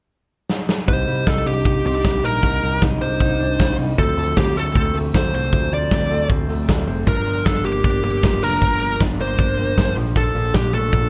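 A fuzz lead guitar sits up front with a dark, distorted melody soaked in tape echo, riding over a short jangly indie pop passage at 155 BPM that feels youthful and nostalgic. A big rock drum kit, with punchy kick and medium-tuned snare in a big room, kicks things off with a fill at 0.5 seconds, and then a slightly broken-up, lo-fi guitar through a small old amp plays arpeggios drenched in lush chorus alongside a round, direct picked bass. The chords move from Cmadd9 through Dm7 and Gm7 to Bbmaj7 in moderate studio ambience.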